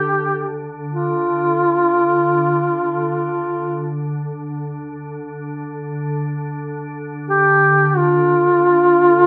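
Mournful and solemn, this short fragment of a Caucasian folk lament unfolds in free time across its 9.3 seconds. A duduk carries the melody from start to finish, its warm voice shaded with vibrato and scooped notes and given a slapback echo that makes it feel both roomy and somewhat distant even as it sits up front. Beneath it, a soft additive organ-like pad holds a low drone throughout, pure yet slightly detuned and gently evolving, with a sub-octave weight, slow attack and long release. Ensemble chorus and the pad's own built-in reverb lend that drone a bright halo well below the reed. The whole piece has a rough home-demo character, bathed in a wet studio reverb.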